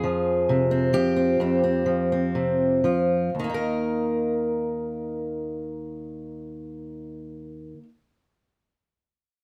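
A fingerpicked steel-string acoustic guitar plays solo and up front in this short, nostalgic folk fragment cut from a longer piece, its warm concert tone set in light reverb as it slows down through the opening Fmadd9 chord before settling on Eb5 at 3.4 seconds.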